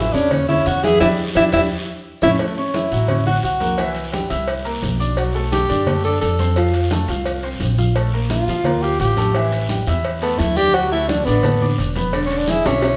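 A brisk, straight 4/4 at 173 BPM drives this sunny, lively slice of Afro-Cuban jazz, cut from a longer piece. Up front, a close-miked tenor saxophone solos across the whole passage in a warm jazz voice, sitting between B3 and A4, while a polished, present grand piano supplies the accompaniment and a woody, growly pizzicato upright bass with steel strings thumps out the low end. The percussion joins almost at once: bright, thin-skinned congas tuned low, round cowbell and bongos played with soft hands in the background, a raspy guiro and grainy, mellow maracas. A band accent lands from 1.0 to 2.4 seconds, and the harmony moves through chords such as Em7, C7, Bbmaj7 and D69 before arriving on E7, with a short drum fill closing things at 12.7 seconds. The group sounds like it is playing live in a single stone room whose reverb lends a lingering wet glow, and the top end is rolled off for a soft, unbrittle sheen.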